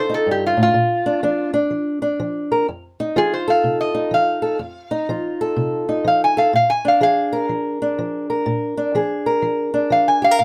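A metallic, nasal resonator slide guitar, played with fingerpicks, carries the melody up front in this swaggering, rollicking blues clip of a little over 10 seconds, swinging at 125 BPM in 4/4. Beneath it, a fingerpicked old ladder-braced acoustic guitar with old strings gives a dark, woody, boxy accompaniment through chords moving between F7, Bb and Bb7. Close, detailed microphones and little reverb keep both guitars intimate and present.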